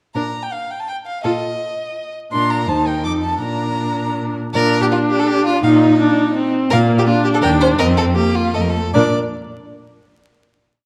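Lively and spirited, this brief, complete classical-period string quartet movement in a quick 3/4 sets a warm, expressive first violin singing the melody with portamento over a clear, focused second violin and a warm viola adding short accented chords and a counter-melody, while a rich, up-front cello supplies pizzicato and sustained bass on the beats, the whole bathed in wet recital-hall reverb and vinyl crackle, slowing from 6.2 seconds into a final chord at 8.9 seconds.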